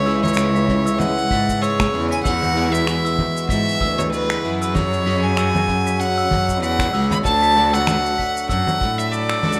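A clear, nasal violin carries the melody up front from the start, played with light vibrato and an airy bow and colored by tape echo and plate reverb, over a reedy harmonium breathing sustained chords in the background, shimmering octave-doubled arpeggios from a picked twelve-string acoustic guitar soaked in lush chorus, and a rich, focused cello holding the bass. This pastoral folktronica fragment swings gently through C#m, Eadd9, F#sus2 and D, as a mellow glockenspiel struck with rubber mallets adds a bell-like, delayed second line from 0.1 s, electronic congas, shaker and finger snaps enter at 0.2 s, and a tight, brushed kick drum joins at 0.7 s. The mix has the rough feel of a home demo, flecked with vinyl crackle in a moderate studio room.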